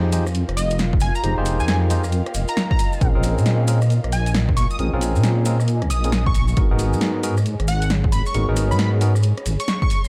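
A deep, soft wobble bass and a bright, barky tine electric piano open this moody, late-night two-step garage excerpt at 0.0 seconds, the piano lightly overdriven through a combo amp with tape echo as it plays stabs over Fm9, Bbm9 and Abm9 chords. The track moves at 135 BPM in 4/4 with a 63% swing on the sixteenths. A punchy analog drum machine supplies hi-hat, rim click and snare, re-recorded in a large room, while grainy acoustic maracas sit in the background and an up-front electronic kick arrives at 0.9 seconds. The dark, detuned sawtooth-and-sine bass carries chorus and compression, and a catchy plucky unison lead with a noise layer, filter sweep, analog chorus and tape echo carries the melody from 0.6 seconds. Beneath them, a very quiet, breathy pad holds sustained chords until 6.6 seconds, and a blurred, evolving granular cloud pad with a moving notch drifts in the background, pumping against the sidechain with its own reverb. 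Overall the mix stays dry.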